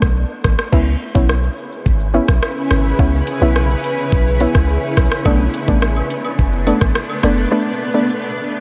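Dancehall at 106 BPM in a straight 4/4, this short cut from a longer piece feels hypnotic and bouncy, bathed in a dreamy, reverb-soaked space with a long ambient tail. From the start, an electronic afro-pop drum kit sits up front with a knocking kick, metallic hats, rim click, shaker and crash, its sound re-recorded in a large room, while a deep, boomy 808-style bass with a sine core and a noise layer hits with a fast attack and decays darkly in the low register. A soft, round pluck with detuned triangle, sine and sawtooth tones, a filter sweep and chorus carries the accompaniment around the middle register, gentle and shadowy. At 1.6 seconds a granular cloud pad fades in with slow-attack, bright, blurred chords that evolve and linger with a long release, its own reverb, analog chorus and sidechain pumping giving it a breathing motion. Very quiet acoustic woodblock and cabasa, heard as a tube shaker and group handclap in a small room, add texture from 5.3 seconds as the harmony moves from C#m7 to Bm7.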